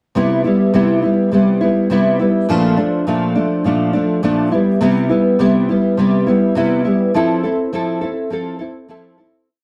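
A dry, close 1970s-style studio sound with moderate booth ambience frames this laid-back, nostalgic indie pop piece in C major at 103 BPM, where a lone, up-front nylon-string guitar with bright fresh strings and a deep classical body fingerpicks and strums eighths in jazz chord shapes through Cmaj7, Bbmaj7 and Fmaj7, its tone colored by analog chorus, warbly pitch drift and slapback echo before a fade-out from 7.1 to 9.5 seconds.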